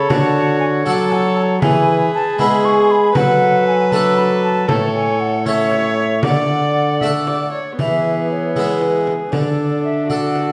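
A hollow, pure silver flute carries the tongued melody up close, touched with vibrato, in this festive, courtly renaissance-style consort dance in 6/8 at 78 BPM, cut from a longer piece. A distant, reedy viola sings a second line, while a second gut-string viola in period style and a brilliant, airy harpsichord fill out the accompaniment over a clear, soft-attacked trombone bass that sits up front. A small, bright frame drum played with hard hands enters at 0.1 s; the chords move from D through E, D/F# and A before a new section begins at 7.8 s, and the ensemble rings in a wet recital hall.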